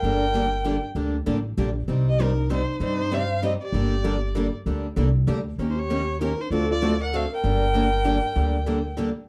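Acoustic string swing in G minor at a swinging, virtuosic 194 BPM in 3/4, this cut from a longer piece has an up-front bowed violin carrying the melody with vibrato, portamento and plate reverb over an airy bamboo bansuri second line, two bright picked acoustic guitars (one full-bodied steel-string, one boxy swing-style, both with finger squeak) and a woody, thumpy pizzicato upright bass, all set in a dark production with moderate studio ambience as the chords move from Gm through Cm, Eb7 and D7#9 back to Gm.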